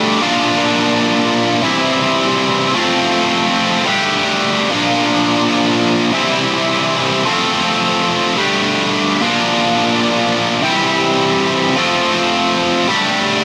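Set at 107 BPM in a straight 4/4, this rock excerpt carries a dark, cathartic mood across its 13.4 seconds. A single electric guitar plays the whole passage, tight and distorted, its bright, picked tone double-tracked and placed up front. It ranges from Bb2 to G4, cycling three times through a progression of Bb, C, F and Gsus2, with each pass returning to Bb at 4.7 and 9.2 seconds. A moderate large-studio reverb with a 1.2-second decay gives the instrument a sense of space around its grit. Cut from a longer piece, the passage holds to one section and leaves the cycle hanging on Gsus2.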